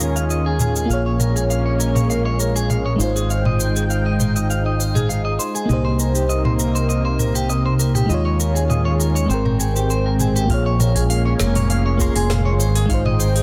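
A dense, heavily limited modern mix with light reverb and digital ambience frames this wistful sunset chillout passage in Bb dorian at 100 BPM, cut from a longer piece, where a round, punchy fretless bass sits up front beneath a dark, soft FM electric piano with chorus and digital delay and a lush, detuned sawtooth pad treated with chorus and phaser. A clean, picked electric guitar plays arpeggios through subtle chorus, a low-pass filter and delay, while a smooth R&B kit of woody snare, metallic hi-hat, shaker and toms keeps a straight 4/4 feel over chords such as Eb9sus4, Bbm7 and Abmaj9. At 10.5 s a deep electronic kick joins in the background, staying until 13.0 s.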